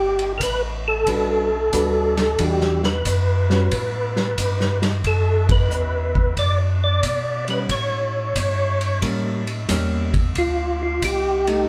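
Bluesy and soulful, this short cut from a longer soul jazz organ trio piece moves at an easy 90 BPM in 4/4, with swung eighth notes in D major. A percussive tonewheel organ carries the melody up front, its round, mellow tone shaped by third harmonic percussion, chorus vibrato and a slow rotary speaker. A second tonewheel organ handles the bass with a piping, scooped sound, light overdrive and audible key click, also turning through chorus vibrato and a slow rotary speaker. The vintage drum kit uses hi-hat, kick, ride and snare, with a punchy kick, dark cymbals and a rolled-off top in a pumping small-room sound. A clean, picked hollow-body electric jazz guitar joins as accompaniment at 1.1 seconds. The harmony moves from Gmaj7 through Em9 and Asus2 to D69, A7b9 and D7sus4, with a band accent at 5.4 seconds, and the group sits in a wet club reverb heard from further back in the room.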